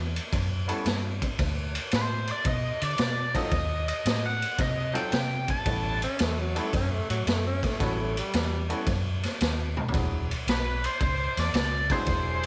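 An electric blues shuffle with a soulful, laid-back swing, this short excerpt opens on dark, round muted bass and a gritty, boomy garage drum kit up front, joined by a woody upright piano with audible action noise, while an overdriven, biting lead guitar carries the melody from 2.0 to 6.0 seconds, a close-miked tenor saxophone with vibrato takes a second line from 6.0 seconds, and the guitar returns after a drum fill at 9.7 seconds, all in light small-room ambience.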